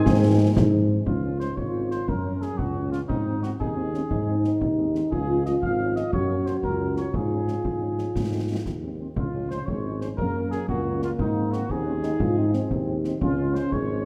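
A spirited, proud military-style march for wind band in 6/8 at 118 BPM in Db major opens with a fleeting pure piccolo note and a brief stretch of tight, sustained trombone chords beneath a dark trumpet section melody, while a warm solo euphonium carries a second line, a very quiet French horn section adds accompaniment, an up-front mellow tuba holds the bass, and close, dry concert snare and bass drums with bright cymbals keep the march going through a reverberant church-like hall.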